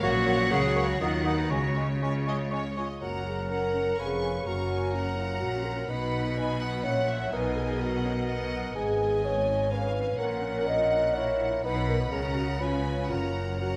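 In a quick, graceful triple metre, this lively classical-period orchestral excerpt sets a focused, distant violin section on the melody above second lines from a dark cor anglais, a smooth chamber violin section and a roomy clarinet, while a hollow silver flute sounds only until 2.8 seconds. A mellow bassoon and a lush viola section fill in the accompaniment in the background, the French horn section holds sustained chords that stand out in the mix, and clear cellos join rich double basses on the bass line. A moderate scoring-stage reverb of 1.7 seconds surrounds the ensemble as the music moves from an opening idea into a new section at 3.0 seconds and closes on the home chord.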